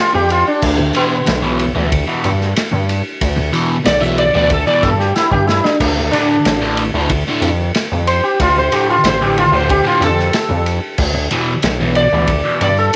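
A buzzing, shimmering sitar sits up front and carries a solo melody across the whole 13-second excerpt, its plucked notes touched by a slapback echo. Beneath it, a bright, double-tracked fuzz guitar plays a low riff through distortion and phaser, while a nasal, aggressive synth bass with a resonant sawtooth edge holds the bottom end. A crunchy breakbeat drum kit with dark cymbals, a tight kick and a rolled-off top keeps a straight 4/4 groove, with a drum fill at 5.2 seconds. A jingly tambourine sits in the background. The harmony moves between Dm and Em7 in a small, lightly reverberant room, giving this fragment of psychedelic rock a mysterious, trippy mood.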